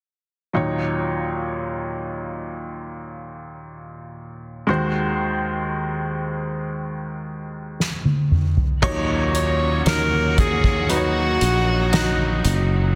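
Light reverb and a small-room ambience surround a dense, heavily limited modern master in this melancholic, emotional pop ballad fragment, moving slowly at 58 BPM in Eb minor. A bright, woody upright piano, slightly detuned with audible action noise, carries the accompaniment alone over Ebm7 and Ab7/Eb until a soft-mallet drum kit with dark cymbals, a fat snare and a boomy kick plays a fill at 7.8 seconds. From 8.8 seconds a growly, punchy fretless electric bass and a distant, lush bowed string section join, and at 9.4 seconds a solo alto saxophone sings the melody with pop-style vibrato.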